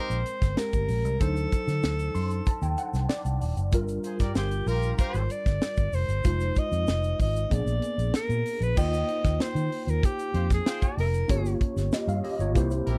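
Polished 1980s jazz-funk pop with a glossy, breezy mood, set in Eb major at 95 BPM in a straight 4/4, cut from a longer piece. A breathy, whispered alto saxophone carries the melody with vibrato and a slapback echo until 11.6 seconds, over a worn, slightly out-of-tune tine electric piano with ensemble chorus that adds a fill around 1.8 seconds, while a distant, roomy horn section supplies a second line in brief passages and returns at 10.3 seconds. Underneath, a dark, round, foam-muted fingered electric bass and a tight funk drum kit with a high-tuned snare sit up front, a grainy tube shaker lingers in the background, and the dry, close studio sound moves through chords such as Abmaj9, Gm7 and Eb69.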